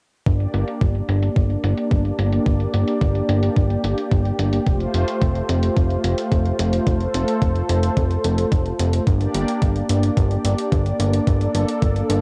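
Synthwave at 109 BPM in G minor, this short cut from a longer piece carries a nostalgic, cinematic mood over a straight 4/4 pulse. A brassy, bold analog pad holds sustained chords up front, its detuned sawtooth tone given a soft attack, filter swell, chorus, vibrato and a cassette-tape coloring that leaves it bright and evolving. Beneath it, a fat, thick analog bass with a fast attack and filter pluck sits low and saturated through tube warmth, while a filter sweep moves across it from 0.3 to 12.2 seconds. The drums are sampler-style and overdriven, with a thumpy kick pushed up front that stops at 11.9 seconds and a softer, low-passed hi-hat, both re-recorded in a large room and run through cassette tape. The harmony moves from Gm to Fadd9 at 4.7 seconds and back to Gm, all wrapped in light reverb and the hazy grain of a home cassette recording.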